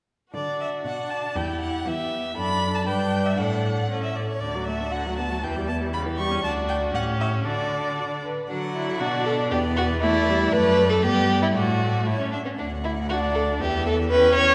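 Bathed in the long, wet bloom of a scoring-stage reverb, this lively, spirited passage from a quick classical-period string quartet movement in D major at 118 BPM in 2/4 sets a focused, smooth-topped first violin melody over a second violin's expressive portamento line, a rich viola accompaniment and a clear, even cello bass placed up front, with all four bowed with vibrato from 0.3 seconds until the music turns to a new section at 8.5 seconds and runs on to 14.5 seconds.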